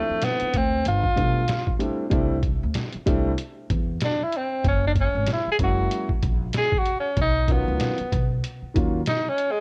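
Smoky and cool, this jazz-hop excerpt from a longer piece sits at 95 BPM in 4/4 with a swung sixteenth-note feel, its tuning set slightly sharp at A4 = 444 Hz. A tenor saxophone carries the melody as an up-front solo from 0.0 to 9.6 s, its tone soft-attacked and vintage with vibrato and scooped notes, touched by a slapback echo. Beneath it, a dark baby grand piano offers mellow, smooth accompaniment with long sustain, while a pizzicato upright bass enters at 0.1 s with a woody, growly tone on steel strings. A sampler-style drum kit of hi-hat, thumpy kick and medium-tuned snare sounds compressed, pitched down and gritty, sitting prominently in the mix. The harmony moves from Dm7 through G7 and C6 to F#7 before settling on Bmaj9#11, all in a dry space with little reverb and a worn cassette-tape character marked by warbly pitch drift.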